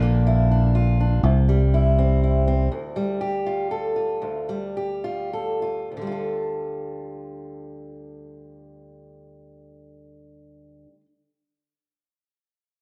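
Set in a straight three-beat lilt, this short folk excerpt cut from a longer piece carries a yearning, wistful mood. A fingerpicked steel-string acoustic guitar plays the accompaniment throughout, its concert-style tone up front and close enough to catch finger squeak on the strings. A fingered electric bass opens alongside it with a dark, round and punchy amped sound. The bass drops out at 2.7 seconds as the pulse begins slowing down, leaving the guitar alone. The harmony moves from Bb to C, settles on Dmadd9, then resolves to Dm at 5.9 seconds as a new section begins. A light small-room reverb gives the recording an intimate air.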